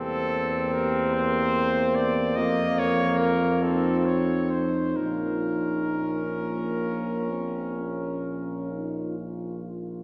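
Heard from further back in a church with a lingering 3.4-second reverb, this cut from a longer classical, hymn-like brass band piece in Bb minor moves with yearning, elegiac rubato at 42-50 BPM in 12/8, as a warm cornet sings the melody over a smooth-topped French horn section in the background, a brilliant, vintage trombone and a mellow euphonium in accompaniment, and a present tuba up front carrying the bass through chords from C7/E to Bbm.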